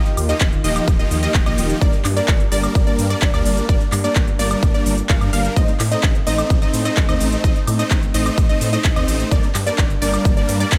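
A straight 4/4 pulse at 128 BPM drives this euphoric, anthemic festival progressive house passage in G minor, where a punchy, up-front electronic kick arrives at 0.4 s beneath a big-room dance kit of crisp hi-hat, handclaps, ride cymbal, shaker and woodblock re-recorded in a large room, while a thick, chorused detuned saw bass underpins huge, sidechain-pumped supersaw chords with digital delay playing the riff, a wave-folded unison pluck, also pumping and delayed, spins high arpeggios, and a very quiet phased pad holds sustained chords through the Ebadd9, Gm and Adim changes, all set in a digital ambience.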